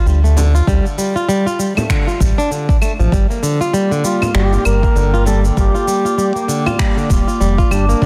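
This organic downtempo excerpt in G minor moves at an earthy, hypnotic 98 BPM with a swung sixteenth feel, as an up-front fingerpicked flamenco guitar plays delayed arpeggios over Dm then Gm, anchored by a round, dark analog bass with sidechain pumping and a deep, tape-warm electronic kick drum. Overdriven electronic shaker, claves and finger snaps add a gritty edge, while an acoustic frame drum sits in the background until 6.8 s. A detuned, lo-fi pad with chorus and sidechain pumping drifts in at 3.7 s, and at 4.0 s a mellow solo duduk joins with vibrato, scooped notes and delay, all within a dense, heavily limited master and light small-room ambience.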